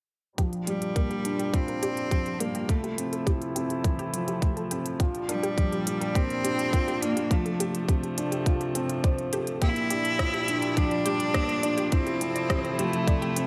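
Piano and strings electronica in G dorian at 104 BPM, this hypnotic, melancholic build-up sets a soft, felt-muted upright piano riff with audible action noise and a dark, reedy string quartet holding sustained chords that pump with the sidechain under a filter sweep. A punchy, detuned sawtooth pluck sits in the background playing flanged, delayed arpeggios through its own filter sweep, while a tight, up-front electronic kick and an electronic kit with crisp hi-hats and rim clicks drive the 4/4 pulse. From 0.7 seconds a biting, vibrato-rich solo cello carries the melody over a Gm7, Fmaj7 and Dm7 progression, all bathed in a moderate recital hall reverb.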